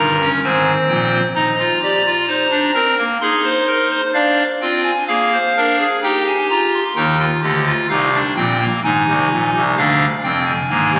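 Captured on a phone inside a church, the recording is bathed in a long, wet reverb that trails for over three seconds, with a faint murmur of club ambience in the room. A single pipe organ carries everything, sounding through a clarinet reed stop whose hollow tone and crisp chiff sit up front in the mix. The music is a stately, elegant baroque-style fugue in four parts, moving in a steady triple metre with a straight feel. The harmony circles through Ab, Abadd9/Eb, Bb7 and Eb chords, and the organ ranges from deep F1 notes up to C6. A second passage begins at 7.0 s and revisits the same Abadd9 and Bb7 colours before this short cut from a longer piece ends at 11.0 s.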